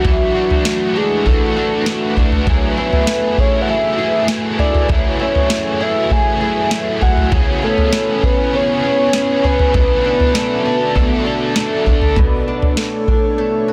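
Dense, heavily limited and lightly reverberant, this hazy, ethereal dream pop excerpt moves at 99 BPM in B dorian, with a round, octave-layered synth lead carrying the melody over an airy, detuned pad in the background, a woody, shimmering twelve-string acoustic guitar playing arpeggios, a biting overdriven guitar with tremolo that drops out at 12.2 seconds, and an up-front vintage rhythm box with deep kick and crisp snare that stops at 13.2 seconds, as the chords pass from E9sus4 through F#m9 and C#m7 to Bm11.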